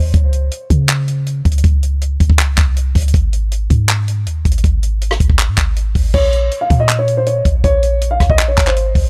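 A half-time 160 BPM trap groove in Bb minor drives this menacing, dark hip hop cut, where a compact cocktail drum kit with a punchy kick, handclaps, hi-hat, rim click and crash sits up front over a deep, boomy sine 808-style bass, while a mellow, boxy grand piano melody filtered with low-pass and analog delay returns at 6.1 seconds as the harmony lands on Bbm, all captured in a dry, gritty hardware recording with transformer saturation.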